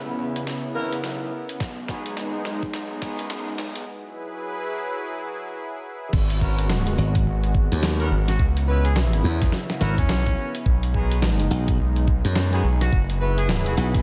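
A detuned, warbling analog pad and a gritty, saturated synth bass open this swaggering, funky glitch hop passage, cut from a longer piece, with the pad's sustained chords pumping under sidechain compression and carrying a vintage sampler crunch. Distant, roomy horn stabs with light vibrato and a diffuse delay soon join, along with a compressed, pitched-down boom bap kit of hats, crash and a medium-tuned snare recorded in a large room, which plays a fill through the build-up. A layered, knocking electronic kick arrives at 1.6 seconds and sits among the loudest elements. The drop lands at 6.1 seconds, and a bright, punchy slap bass then takes its place up front beside the aggressive, evolving synth bass. From 8.3 seconds a solo trumpet with a warm, pop-style tone and light vibrato carries the melody through a soft haze of delay, over a swung groove and a light digital reverb.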